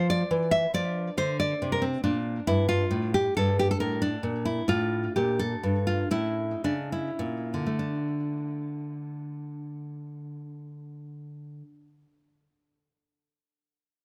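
This classical, baroque-style dance for solo nylon-string guitar moves in 12/8 with a free, rubato feel, and its mood is solemn yet flowing. The guitar is fingerpicked and sits up front, with an acoustic, deep classical tone and a touch of tape echo on its notes. Its range stretches from low bass notes up into the upper register. The phrasing slows noticeably from 2.9 to 7.8 seconds, easing into a new section that begins at 7.8 seconds. Close, detailed microphones and very little reverb make the sound intimate and dry, and this brief passage is cut from a longer piece.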